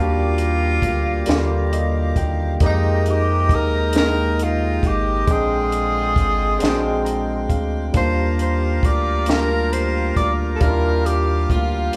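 A slow, intimate R&B piece in six-eight at 45 BPM opens with a breathy tenor saxophone carrying the melody over a barky, lightly overdriven tine electric piano, reedy accordion chords, horn stabs in the background and a rubbery square-wave bass, with a compact cocktail drum kit joining at 0.4 seconds. The saxophone sits up front yet sounds roomy, its mellow jazz-style tone marked by light vibrato and scooped notes. The electric piano, bright through a combo amp, adds fills at 1.3 and 6.6 seconds, while the accordion holds airy, slowly beating chords and the horn section stays distant and warm. The bass is hollow and bouncy with a fast filter pluck, and the drums are dark and smooth, pairing a punchy kick and high-tuned snare with hi-hat. The tender harmony moves in Eb major from Ebmaj9 through Fm11 and Bb13 back to Ebmaj9, as the band plays together in a large studio with moderate reverb in this passage cut from a longer piece.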